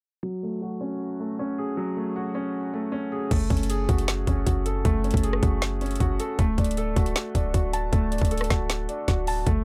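A half-time trap groove at 156 BPM in 4/4 drives this eerie, menacing hip hop excerpt in F# minor, cut from a longer piece. A dark baby grand piano opens alone at 0.2 seconds, its mellow, long-sustaining tone sitting up front under a low-pass filter, with a filter sweep shaping it through the opening and voicing an F#madd9 chord. At 3.3 seconds the trap drum kit and a clean 808-style bass arrive together: the electronic kit brings a hard-clipped kick, woody snare, metallic hi-hats, rim clicks and crash cymbal placed up front, while the 808 delivers a deep, boomy sine tone with a fast attack and decaying tail, colored by tube saturation. The harmony shifts to D at 6.4 seconds, and the piano, bass and drums carry on to the end. The sound is dry and gritty, with little reverb and a hardware character marked by transformer saturation.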